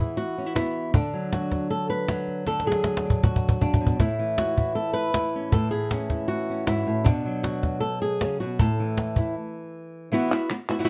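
A proud, festive flamenco excerpt opens with a fingerpicked acoustic flamenco guitar with fresh strings carrying the melody up front over Esus2, D, A and Bm chords, joined at 0.6 seconds by a snappy, close and dry cajon with snares, played with hard hands, which adds a fill before stopping at 9.4 seconds; crisp, dry palmas hand claps then enter alongside the guitar at 10.3 seconds, all set in a dark production with moderate studio reverb.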